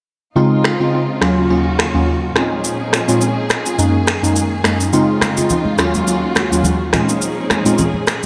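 Afrobeats with a joyful, romantic glow and a gently swung groove, built on glassy, airy digital keys that sit up front with chorus and dub echo as they move through extended chords. Behind them, a distant, lush studio string section sustains bowed chords with expressive vibrato and portamento, while an electronic rim click, finger snaps and shaker carry the beat with dub echo of their own. At 5.2 seconds, close, high-tuned congas with a thick skin join in, rounding out this echo-heavy fragment of a longer piece set in a small, lightly reverberant room.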